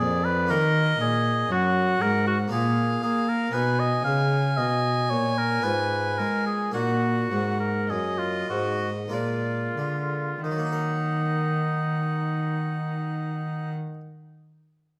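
In a straight triple metre that slows between 2.0 and 10.4 seconds, this introspective, solemn fragment of a baroque-style sonata movement sets a gut-strung violin melody with light vibrato above a smooth, up-front oboe second line, while an airy, full-bodied harpsichord plucks the accompaniment and a dark, bowed period cello carries the bass inside a moderate recital-hall reverb.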